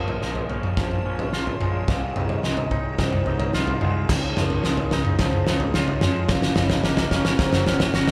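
Melancholic and cinematic, this 8-second post-rock fragment in Bb minor moves at 109 BPM in a straight 4/4, building throughout over Bbm7, Fm7/C, Dbadd9 and Gb while a loose indie drum kit, up front with a fat snare, tight kick, dark cymbals and pumping room sound, plays a fill across crash, toms, kick and snare. A twangy, clean electric guitar picks arpeggios with a vibrato effect, joined by metallic, ringing vibraphone arpeggios sitting in the background, while a punchy fingered bass growls with overdriven fuzz underneath. From 0.6 seconds a very quiet, crystalline glass pad with chorus adds airy sustained chords, all captured as a band playing live in one room with light reverb.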